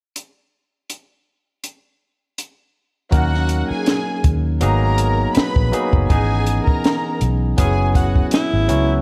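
Lush, bittersweet 1970s-style soul with a silky swung feel, opening on a compact, punchy cocktail drum kit alone until a round, foam-muted electric bass, a barky, lightly overdriven tine electric piano and a dark, woody bowed violin section enter at 3.1 seconds over a D#m7 to F#9sus4 progression, before a breathy, whispered alto saxophone slips in close and intimate at 8.3 seconds, all in light studio reverb.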